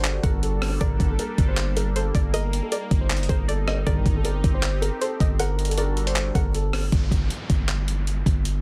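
A gritty, sampler-style breakbeat kit with a thumpy kick, claps, hi-hat and rim click drives this eerie, brooding half-time trap excerpt up front, alongside a punchy, heavy 808 bass. Above them, a dark, boxy grand piano carries the melody through a low-pass filter and delay, while a twangy, string-like resonator pluck adds a second line. An evolving sawtooth pad holds sustained chords, and a glossy retro polysynth drops brief stabs in the background, until the piano and pad stop at 6.9 seconds and an electronic downlifter takes the dense, heavily limited, dry mix out.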